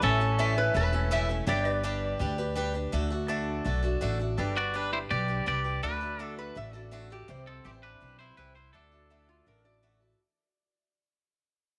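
A straight 4/4 country groove with a heartfelt, easygoing mood, this excerpt from a longer piece fades out throughout as a boxy, picked swing-style acoustic guitar and a woody, dark pizzicato upright bass carry the accompaniment up front, a clean, compressed, twangy electric guitar with tape echo plays a brief opening phrase and returns with the melody at 4.6 s, a metallic, nasal lap resonator guitar played with fingerpicks and slide adds a second line, and a pedal steel guitar with lush chorus and volume swells holds sustained chords in the background of a small room with light reverb.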